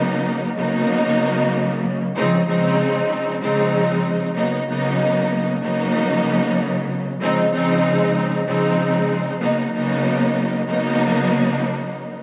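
A lush, up-front symphonic string section bowed with expressive vibrato and portamento plays alone from 0.0 to 12.1 s in this warm, confident hip hop excerpt with a swung sixteenth-note feel, its cassette-tape grain and high- and low-pass filtering set in a dreamy plate-reverb haze as the harmony alternates between Cbmaj9 and Dbmaj9.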